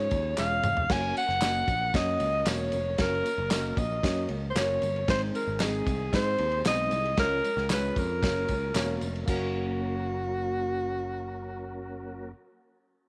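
Joyful and uplifting, this is an uptempo 1960s-style soul excerpt at 115 BPM in 4/4 with a straight feel, set in F# major and moving through C#, F# and G# chords. A breathy alto saxophone carries the melody up front with clear tone and vibrato in a pop style, while a worn, slightly out-of-tune tine electric piano plays accompaniment in the background. A very quiet tonewheel organ holds sustained chords with key click and a fast rotary speaker, and a picked electric bass sits underneath with a warm, direct tone. The acoustic soul drum kit, with dark cymbals, a medium-tuned snare and a tight kick, opens with a fill at 0.4 seconds and plays alongside tambourine, egg shaker and group handclaps until about 9.4 seconds. After that the saxophone, electric piano, organ and bass carry on alone in a closing section. Light reverb and small room ambience give the sound an intimate, close feel.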